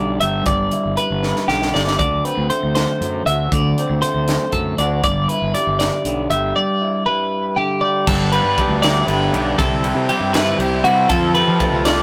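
A clean, compressed twelve-string electric guitar sits up front, picking bright arpeggios through this intricate, bright stretch of math rock and midwest emo cut from a longer piece. Beneath it, a twangy electric guitar through a small old amp plays slightly broken-up accompaniment, while a fingered electric bass growls with punchy fuzz and overdrive. The drum kit comes in at 0.2 seconds with a high-tuned snare, a punchy kick, hi-hat, ride and crash in a small, pumping room, and it plays a fill between 1.2 and 2.0 seconds. The straight 6/8 feel moves through sixth and seventh chords, and at 8.1 seconds a raw, double-tracked garage guitar enters with an overdriven riff as the harmony shifts to richer added-tone and major-seventh colours. The whole recording has the rough character of a rehearsal room, with tube saturation and a moderate reverb.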